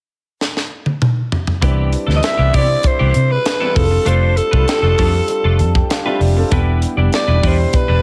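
Polished 1980s jazz-funk pop at 98 BPM in C major, upbeat and urban, where a tight funk drum kit with a high-tuned snare and gated reverb opens with a fill at 0.4 seconds before a round, foam-muted fingered bass, a grand piano with lush chorus and long sustain, and a bright, twangy clean guitar riff with analog chorus arrive at 1.6 seconds over Cmaj7, F6 and Em7, and a breathy, raspy alto saxophone carries the melody up front from 2.2 seconds while the piano adds a fill around 5.3 seconds in a small room.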